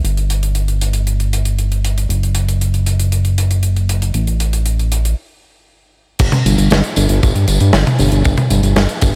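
Dreamy and uplifting, this 117 BPM synthwave excerpt pairs a fat, detuned sawtooth analog bass, saturated and pumping up front, with an acoustic studio drum kit of bright cymbals, hi-hat, medium-tuned snare, tambourine and toms in light reverb, pausing at 5.2 seconds before a punchy, mid-forward kick drum joins at 6.2 seconds as the second section begins.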